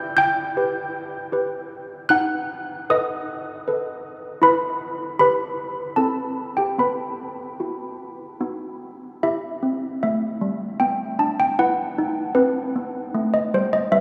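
Solemn and wintry, this classical excerpt in a steady three features malleted handbells playing alone from G3 to G6, their damped, short, airy strokes sitting up front yet heard from further back in a wet cathedral reverb, moving from E minor through C and suspended B harmonies before a new passage begins at 9.2 seconds and closes on B7.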